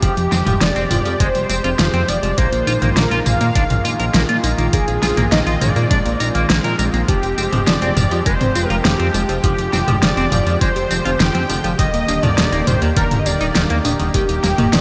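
A thick, detuned unison synth lead carries the melody in this nocturnal, moody synthwave excerpt, its sawtooth tone shaped with vibrato, subtle chorus and digital delay. Beneath it, an up-front, overdriven pop kit with gated reverb brings a fat snare, tambourine, toms and hi-hat, joined by a knocking electronic kick that drops out at 14.3 s. A glossy chorused synth bass anchors the low end while a clean, picked electric guitar plays a riff through analog chorus and delay. In the background, a smooth analog pad holds sustained chords with tremolo and sidechain pumping, and a punchy unison pluck traces decaying arpeggios. The harmony moves from Fmadd9 to Bb7sus4 and back before settling on Ebmaj7, set in a moderate hall reverb with bright 1980s-style digital production.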